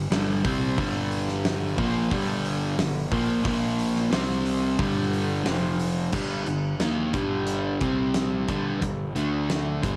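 A heavy, menacing hard rock piece in G minor at 90 BPM opens with two dark, picked guitar riffs over a growly, fuzz-laden fingered bass. The sludgy distorted guitar sits up front, with the overdriven semi-hollow guitar tucked behind it in spring reverb. A huge arena drum kit enters at 0.1 seconds with a fat snare, punchy kick, hi-hat and crash in a big room, while the riff moves from Gm through Bb5, C5, G5 and F5 before a second section at 6.1 seconds ends on D5, all carrying the lo-fi grain of a home cassette recording with light reverb.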